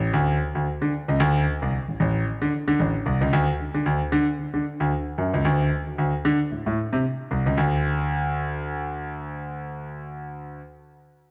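Gritty and energetic, this short funk excerpt cut from a longer piece moves at 113 BPM in 4/4 with a light swing on the sixteenths. A concert grand piano plays alone from 0.0 to 10.6 seconds, staying low in its range between A1 and D3. Its tone is clear yet worn, with a deep bass, short sustain and a present, up-front placement, colored by a cassette tape character. The home cassette recording sits in a moderate, lush hall reverb that lingers around the piano's clipped notes. The passage moves through three sections, changing at 3.3 and 7.6 seconds before the fragment ends at 11.3 seconds.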